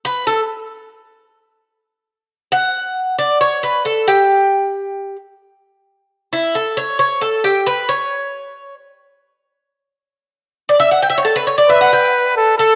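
A straight 4/4 pulse at 134 BPM drives this sunny, danceable Latin excerpt, tuned to A4 = 442 Hz, as an up-front, mellow Cuban tres picks metallic, double-string arpeggios alone from 0.1 s until a breathy, whispered trumpet with vibrato and a soft attack enters close and intimate at 11.7 s for a brief pop-style melody, both parts coloured by cassette tape and set in a wet spring reverb with the studio ambience of a home cassette recording.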